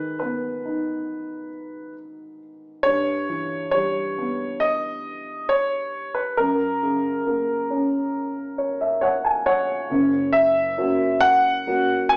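Heard through a small-speaker sound, this recording has two pianos played live together in one large studio, wrapped in a wet reverb that lingers just under a second. It is an emotional, hopeful pop piece at a slow 68 BPM in a straight 4/4, cut from a longer work. A warm grand piano carries the melody up front, its present tone ringing with long sustain in the upper register. Beneath it, a dark upright piano provides accompaniment from deep bass to the same upper reaches, its mellow, woody and slightly boxy character sitting close to the listener. The harmony moves from G#m through Em/G to F#, and the upright adds a fill from 8.1 to 9.9 seconds before the music turns to a new section at 9.9 seconds.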